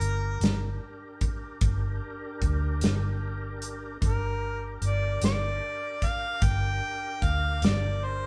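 A stone room's moderate reverb surrounds this brooding, soulful slow blues in G minor, cut from a longer piece, moving at 50 BPM in a straight 12/8 over a single Gm chord, with the band playing live together. Up front, a clear harmonica carries the melody with light vibrato, scooped notes and a smooth top in a jazz-inflected solo, its tone touched with overdrive, while a tonewheel organ holds full, lightly overdriven chords through a slow rotary speaker and chorus vibrato. A dark, round, foam-muted vintage electric bass and a punchy acoustic country drum kit of hi-hat, kick and medium-tuned snare sit close in the mix, the drums stopping at 7.8 seconds as the other parts carry on to 8.3.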